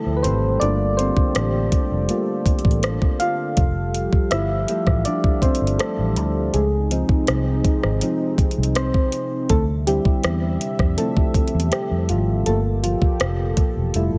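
Tender and smooth, this contemporary R&B passage features mellow, rounded electric-piano-like synth keys soloing throughout over a detuned, slow-blooming analog pad, a dark, foam-muted fingered electric bass and an up-front produced drum kit of knocking kick, metallic hi-hat and rim click, with chords drifting through Dm11, Gm9, Fmaj9 and Dbmaj9 in light reverb.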